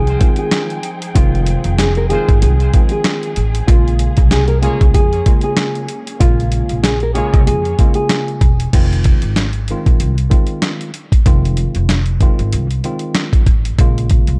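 A gritty, compressed sampler-style drum kit with a thumpy kick and a 56% swing on the sixteenths drives this tough boom-bap hip-hop excerpt at 95 BPM in F minor. A woody pizzicato upright bass sits up front, and together with a worn, slightly out-of-tune tine electric piano, lightly overdriven with a cassette-tape tone, it moves between Fm7 and Bbm7. A dark, thumb-plucked nylon-string guitar melody and a lush, bowed string section in the background play until 8.7 s, and a mellow, distant trumpet section adds delay-touched stabs from 2.1 s, set in a small room ambience.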